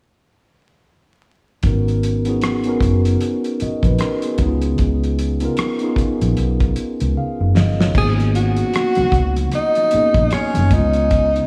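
A mellow tine electric piano, a round, foam-muted electric bass and a damped 70s drum kit with a fat snare and dark cymbals enter together at 1.6 seconds, setting a smooth, introspective neo-soul groove at 76 BPM with a swung sixteenth feel in G# minor, moving between G#m11 and C#9. After a drum fill, very quiet congas and a breathy, close-miked tenor saxophone with vibrato and scooped notes join at about 8 seconds for a jazz-style solo up front. The dreamy mix is soaked in lush hall reverb and vinyl crackle, and this excerpt is cut from a longer piece.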